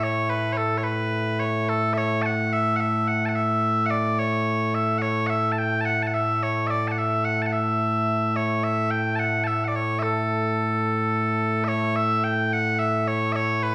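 A lone set of bagpipes sounds from the very first moment, loud, piercing and placed up front, carrying this stirring, ceremonial piece of traditional Scottish pipe music. The tune moves in a straight 6/8 at 72 beats per minute counted in dotted quarters, firmly rooted in A major. The pipes play as a continuous solo across the whole 13.7 seconds, ranging from A2 up to A5 with a bright edge. At 11.7 seconds the opening phrase begins again, and the fragment cuts off shortly after, clearly lifted from a longer performance. The playing was captured live in one room, and a large studio reverb with a 1.1-second tail gives the pipes a spacious, wet sheen.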